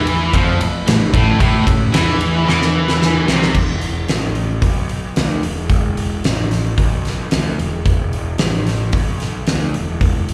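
Heard through a club PA with small-room ambience, this heavy, menacing hard rock excerpt opens with a huge arena drum kit of punchy kick, fat snare and bright cymbals up front, a growly fuzz bass, a biting double-tracked guitar with spring reverb and two tight distorted guitars riffing in the background with slapback echo, and a very quiet gritty organ holding sustained chords through a slow rotary speaker; a drum fill arrives at 2.5 seconds, and after the guitars and organ drop out at 3.5 seconds, the bass and drums carry on together to the end.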